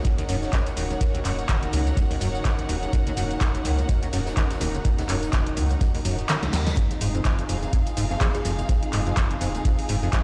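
A driving 125 BPM acid house groove in 4/4 rides a 16th-note swing of 57%, with an overdriven, deep electronic kick pushed up front beside a punchy analog drum machine of handclaps, snare, shaker and metallic hi-hats, while an oversized low-tuned acoustic kit sits very quiet underneath with a fat, gritty snare. A squelchy, resonant square-wave acid bass runs its riff through a filter sweep, analog chorus and tape echo, and a round sine sub bass anchors the low end, both pumping against the kick. Behind them, a thick, detuned sawtooth unison pad holds sustained chords from Ebm7, moving to Fm7 at 6.8 seconds, as a bowed symphonic string section adds smooth, vibrato-rich texture. At 6.2 seconds a reverse cymbal enters in the background, and just after, the kick drops out for a short drum fill. Near the close a buzzing, woody kalimba plucks a single note through dub echo. The trippy mix sounds as if played on a big sound system in a bare stone room, cut from a longer piece.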